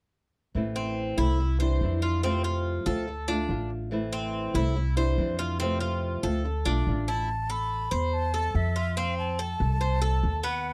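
A straight 4/4 pulse at 143 BPM drives this nostalgic Latin passage in A minor, cut from a longer piece, with a woody, thumpy pizzicato upright bass on gut strings and a fingerpicked flamenco guitar, finger squeaks audible, cycling through Am, Cadd9, F and Dm. A Cuban tres adds metallic, double-string arpeggios from 0.8 seconds. When the guitar drops out at 7.3 seconds, a breathy jazz flute, having entered at 7.1 seconds, carries the high melody with vibrato, a soft attack and an unsteady quality, all captured in a dry, close 1970s-style studio sound.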